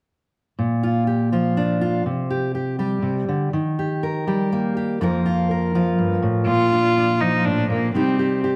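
A steady 3/4 pulse at 122 BPM carries this warm, uplifting folk passage in Bb major, cut from a longer piece, where an up-front, full-bodied fingerpicked steel-string acoustic guitar accompanies from 0.6 s to the end, joined at 6.5 s by a reedy, gut-string bowed cello with a smooth top and analog delay that takes the melody, all set in a large studio reverb.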